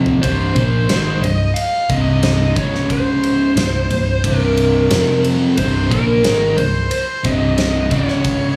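A straight 4/4 hard rock groove opens with a drum fill from a huge arena kit, its fat snare and punchy kick booming alongside ride cymbal and toms, while a round, dark hollow-body bass anchors the low end. Two picked, overdriven rhythm guitars churn out the riff in the background, one bright and cranked, the other crunchy, as chords move through Cm, Db5, C5 and F5. Up front, a bluesy lead guitar with a distorted, dark tone and slapback echo carries the melody from 0.2 seconds, giving this menacing, aggressive excerpt its snarl within a light, small-room ambience.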